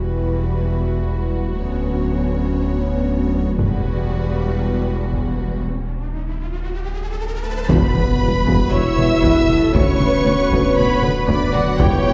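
Set back in a wet scoring-stage reverb, this cinematic excerpt blends a hybrid orchestral and electronic film score at 117 BPM in E dorian, with a futuristic, tense mood. Two lush violin sections carry the melody and a second line from the start, one focused and the other smooth and distant. A woody viola section accompanies in the background, while dark French horns and a hollow, flute-like pad with chorus hold sustained chords behind it. Cellos, double basses and a round sine sub bass anchor the low end. Hard-stick taiko drums enter at 3.6 seconds, and an electronic riser builds through a break before an impact lands at 7.7 seconds. At that point a very quiet, roomy tuba joins the bass for the closing stretch.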